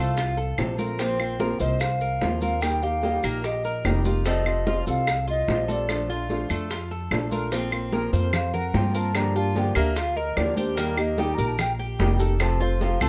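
Latin Cuban son in a guajira vein, this sunny, danceable excerpt moves at 147 BPM in Bb major, with a breathy, mellow concert flute carrying the melody over a dark, fingerpicked nylon-string guitar and the metallic, double-stringed arpeggios of a Cuban tres. Up front, a woody pizzicato upright bass anchors the groove, while background bongos and congas join grainy maracas from about 0.2 seconds, and compressed, saturated claves follow in the background at around 0.6 seconds. At 7.5 seconds the flute takes an expressive solo with vibrato and a crisp attack, all captured in the small-room ambience of a rough home demo.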